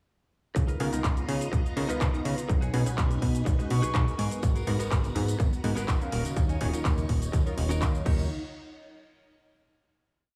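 A clean, twangy electric guitar opens with a funk chord riff, carrying a gritty 12-bit sampler texture and a sidechain pump, before the full drop lands at 0.6 seconds in this sensual, nostalgic filtered disco house piece. A punchy, overdriven kick drives a four-on-the-floor pulse up front, joined by a house kit of shaker, closed and open hats, clap and crash, while a plucky analog bass with ring-modulated bite jumps between octaves. Behind them sit a swirling, phased string machine holding sustained chords and a detuned polysynth comping a rhythmic chord riff through chorus and phaser. An airy silver flute drifts in from a distance with short phrases bathed in a diffuse delay from 2.6 to 6.7 seconds, and the guitar adds a brief fill from 3.7 to 4.4 seconds. Tambourine and congas played with soft hands join in the background from 4.4 seconds, and the piece closes on a final hit after the drop ends at 8.3 seconds.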